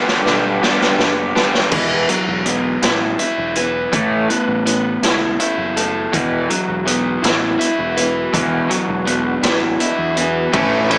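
With a small-speaker sound, light reverb and studio ambience, this upbeat, carefree indie rock excerpt moves at 54 BPM in 6/8. A bright, up-front overdriven guitar riff rides over a lo-fi garage guitar with subtle chorus tucked in the background, while a saturated, gritty drum kit with a boomy kick and rolled-off top opens with a fill. A growling overdriven picked bass enters at 0.3 s, and a very quiet, lush, detuned unison pad with chorus and phaser arrives at 6.1 s, all over chords moving from Gmaj7 through Esus2 and Asus2.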